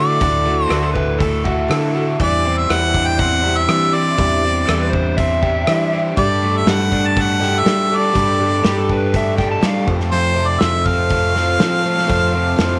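A clear, up-front harmonica sings the melody with light vibrato and scooped notes over a shimmering, octave-doubled twelve-string acoustic guitar, a double-tracked overdriven electric guitar riff and a round, dark fretless bass lush with chorus, as a loose indie drum kit with a punchy kick and pumping small-room sound joins at 0.2 seconds, a dark, overdriven slide guitar adds a second line from 0.7 to 9.9 seconds, and a bright, earthy chamber string section enters in the background with sustained chords at 6.1 seconds, giving this jangly, warm folk and heartland rock cut a steady 121 BPM drive in 4/4.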